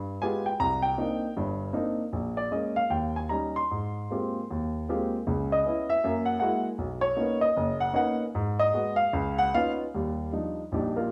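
Solo jazz piano, sophisticated and warm, moving at a swinging 143-160 BPM in 4/4 with a loose, rubato feel and a lilting swing on the eighth notes. A baby grand piano carries the whole 11.1-second excerpt alone, its tone natural and placed up front, ranging from a deep F#1 in the bass to C6 at the top. The harmony is rich and chromatic, opening on a G7b9 that resolves to Cm9, then sliding through pairs of minor sevenths and dominants, such as Bbm7 to Eb7 and Dbm7 to Gb9, into lush major chords like Abmaj13 and Bmaj9. The passage arrives on an Ebmaj9 at 10.0 seconds as a new statement of the theme begins before the cut. A moderate reverb from a large studio surrounds the instrument, giving a live, in-the-room sense of space.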